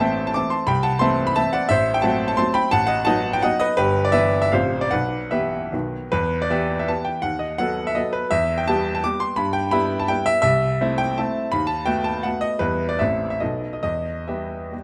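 Capricious and nostalgic, this romantic classical triple-time dance in E minor moves with a rubato feel between 127 and 188 BPM, its clear, intimate grand piano playing solo up front with audible action noise across a range from G1 to D6, heard through close, detailed microphones and a moderate recital hall reverb, shifting into a new section at 6.1 seconds before settling on E minor at 13.8 seconds in this short cut from a longer piece.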